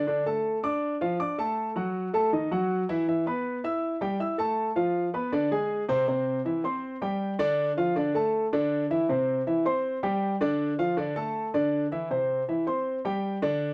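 A straight 4/4 Latin groove carries this passionate, driving fragment from a longer piece, played by a solo concert grand piano with deep bass, an open tone and long sustain, set up front in light reverb and caught by close, detailed microphones with a faint mains hum, as the harmony moves from Dm through D#dim, Em, F and G# before settling into an alternation of Cadd9 and Dm from 6.1 seconds.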